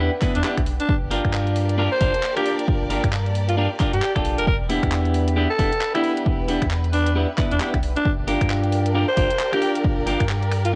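A very quiet, ethereal pad, clean electric guitar stabs with cassette tape and analog delay, a soft, round dub sub bass with tube saturation, and a clear string section in the background all open together in this soulful, moody cut from a longer UK garage piece in the two-step style, running at 134 BPM in 4/4 with a 60% swing on the sixteenths. At 0.2 s the punchy, tape-warm electronic kick arrives alongside a layered garage kit of finger snaps, handclaps and bright hi-hats, and at 0.4 s a raspy, gritty alto saxophone takes the solo melody, close-miked and up front with a light vibrato. The guitar sits dark and picked near the front, while the bowed strings carry sidechain pumping and tape coloring beneath the horn. The harmony moves between Em7 and Gm7, with the airy pad's slow attack and long release holding the chords in a haze of ensemble chorus and built-in reverb. The whole mix has the character of a home cassette recording wrapped in digital ambience.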